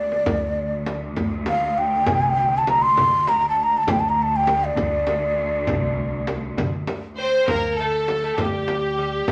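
Set in a wet studio reverb, this hypnotic, melancholic Persian modal piece in 6/8, cut from a longer work, is led by a breathy, hollow end-blown ney up front over a focused bowed drone from a chamber cello section that holds until 7.5 seconds. A drum fill opens the passage, and a deep, very quiet tombak and a small, bright, dry frame drum play alongside a woody, thumpy pizzicato upright bass underneath. At 7.2 seconds a rich, intimate sul tasto violin section enters close as a second line, with a delicate fingerpicked gut-string lute tucked in the background.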